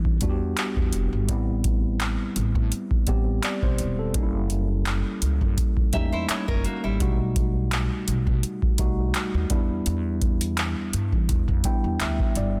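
Late-night and moody, this short excerpt cut from a longer contemporary R&B piece moves at an unhurried 84 BPM in 4/4 with a light swing on the sixteenths. A booming analog drum machine sits up front with a deep kick, metallic hi-hats and handclaps, its tape-tinged character giving the groove weight. Beneath it, a pizzicato upright bass adds a woody, growly, thumpy low end, while a mellow tine electric piano, clean and direct, carries the chords through Em7, Am7, F#7b9 and B7b13 before returning to Em7 at 9.5 seconds. Briefly, from 5.9 to 7.2 seconds, a fingerpicked nylon-string guitar adds bright, full-bodied arpeggios with audible finger squeak and a digital delay. The electric piano closes with a fill starting at 11.3 seconds, all set in a small room ambience under a dense, heavily limited modern master.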